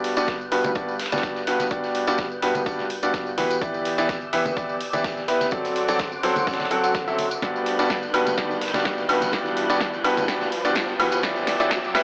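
A punchy analog drum machine drives this piano house cut at 126 BPM in 4/4, its hi-hat, snare and woodblock sitting over an electronic kick with a tape-warm thump, while a gritty, sampler-style soul kit adds hats and a medium-tuned snare in the background and compressed tambourine and congas bring soft hands. Up front, a bright baby grand carries the riff in G major, its brilliant, intimate tone showing audible action noise and pumping against the sidechain through a low-pass filter. Beneath it, a very quiet analog string pad holds silky, detuned sawtooth chords with slow attack, ensemble chorus and vibrato, moving from Gmaj7 through Em7 and D7/F# and back. The whole passage is a euphoric, feel-good build-up, with a faint riser entering at 3.0 seconds and a drum fill running from 7.4 seconds to the end. A lush hall reverb surrounds a dry, lo-fi finish that carries cassette and AM-radio coloring, and the clip is cut from a longer piece.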